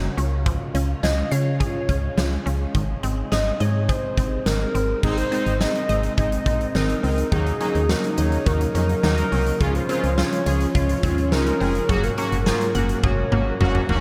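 Synth-pop with a wistful yet bright mood, heard as a fragment from a longer piece and bathed in a dreamy cathedral-like reverb. A hollow, woody clarinet-like synth lead carries the melody with vibrato, chorus and tape echo. Beneath it, a vintage organ-like ensemble string pad holds soft sustained chords through phaser and ensemble chorus. A squelchy, resonant blip pluck spins arpeggios in the background. A round, dark FM bass sits up front with a punchy attack. A huge arena drum kit enters at 0.2 seconds with a fat snare and punchy kick. At 5.0 seconds a bold, detuned analog synth brass joins as accompaniment, and the drums close with a fill from 13.0 seconds, while the chords drift from Db through Ebm7 and Dbmaj7 to Gbadd9.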